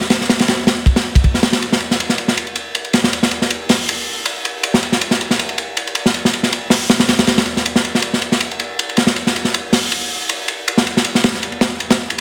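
Drum and bass with a nostalgic, dark mood, carried entirely by a crunchy breakbeat drum kit of hi-hat, kick, snare and ride cymbal in 4/4 with a light swing on the sixteenths. The kit sits up front with a gritty, saturated character, a tight kick, a medium-tuned snare and dark cymbals under a rolled-off top, heard in a studio room with light reverb. The sound shifts into a new section at 1.6 seconds and runs to the end of this cut from a longer piece, with a dense, heavily limited modern master.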